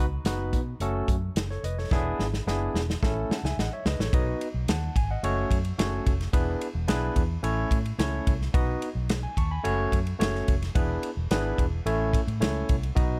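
Recorded in a studio room with an airy, polished sound, this short excerpt of joyful 1960s-style soul moves at a brisk, uplifting pace in a straight 4/4 feel. A barky tine electric piano, lightly overdriven through a combo amp and placed up front, carries the accompaniment with a warm, gritty bite from the opening moment. Beneath it, a vintage fingered electric bass with a dark, round, foam-muted tone plays through an amp to anchor the low end. An acoustic drum kit with a punchy kick, a medium-tuned snare, hi-hat and ride cymbal comes in at 0.3 seconds, sitting forward in the mix, and plays a fill from 1.9 to 4.1 seconds that leads into the longer second passage. Throughout, the harmony cycles through B, F#m, E7 and A, giving the groove a bright, buoyant lift.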